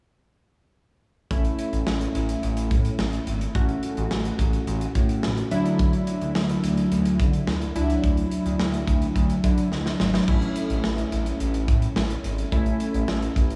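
A straight 4/4 synth-pop groove, cut from a longer piece, sets a wistful yet bright mood as a modern studio drum kit with a punchy kick and bright cymbals, a smooth, saturated sawtooth synth bass and round, detuned analog keys shimmering with chorus and phaser enter together at 1.3 s, moving from A to Dadd9 at 5.5 s before a drum fill at 9.7 s leads back to A, all set in a dreamy mix soaked in a huge ambient reverb.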